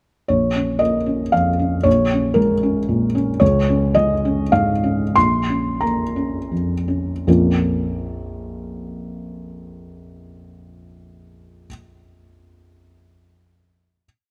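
Wistful and melancholic, this brief neoclassical minimalist piece for solo felt-muted upright piano unfolds in a rubato triple metre. The piano carries a single-line melody over rocking broken chords, moving from Bb minor through Bbm7 and Db before returning home. From 2.6 seconds the pace slows, easing into a final chord that rings from 7.3 to 11.8 seconds. The thick felt gives the instrument a soft, dark, mellow tone with short sustain, and the audible action noise adds a natural, intimate texture. Close, detailed microphones place the piano up front, with only light reverb around it.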